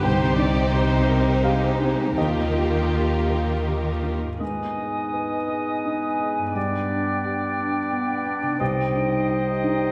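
A felt-muted upright piano, soft and intimate with its action noise audible, opens this tender, moving film-score excerpt alongside a very quiet, ringing concert harp playing arpeggios. With them, a violin section sings the melody with expressive vibrato and portamento over a smooth, lush second violin line, a rich viola section in the background, and bowed cellos and double basses holding the bass, the basses up front. The music sways in 3/4 at 79-90 BPM with a flexible rubato feel, moving from Cm to Ebadd9. The strings fall away by 4.2 s, and at 4.4 s the second section brings in woodwind lines: a clear clarinet, a pure, hollow flute and a distant, roomy oboe, over a French horn section holding sustained chords in the background. Piano and harp carry on to the close at 9.9 s as the harmony passes through Abm and G back to Cm, all set in a wet scoring-stage reverb that places the orchestra further back in the room.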